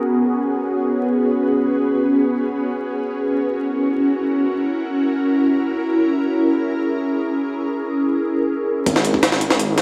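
Nostalgic and atmospheric, this drum and bass and jungle excerpt in free time opens on an ethereal, airy pad sustaining chords from G#m11 to F#7 through chorus, phaser and built-in reverb, before a gritty, pitched-up sampler-style jungle kit with a thumpy kick and high-tuned snare arrives up front alongside a thick, beating detuned saw bass at 8.9 seconds, all bathed in a lush hall reverb and heard as if played on a big sound system in a bare stone room with vinyl crackle.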